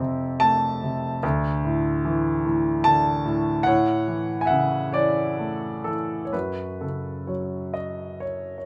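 In a 6/8 metre with a free, rubato feel, the pulse moves slowly at 42-50 beats per minute counted in dotted quarters, giving this short passage from a longer classical work an unhurried, breathing quality. A grand piano plays alone throughout the 8.7 seconds, ranging from D2 up to A5 in A major, and the mood is melancholic and dark despite the key. The instrument sits intimate and up front, with a polished, clear tone, and the noise of its action is audible close to the ear. The harmony drifts from F to Dsus2 and settles on A at 3.7 seconds before the passage turns toward a new section on F#m at 6.3 seconds. A moderate studio reverb adds a short halo of space around the piano, keeping its presence immediate and lyrical.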